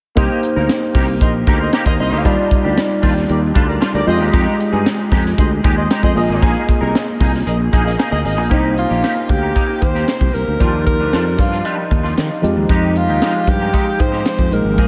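A breathy alto saxophone with delay takes the melody up front from 8.5 seconds in this bittersweet, slick slice of polished 1980s jazz-funk pop at 115 BPM in C minor, after a dark, vintage horn section has held a tight second line in the background from 1.2 to 8.4 seconds, all over a worn, slightly out-of-tune tine electric piano with overdrive and analog chorus, a clean semi-hollow guitar riff with ensemble chorus, a growly, punchy fretless bass, and a tight funk kit with a high-tuned snare, the whole dreamy mix soaked in cathedral reverb as the chords move from Cm7 through Ebmaj9 and Fm9.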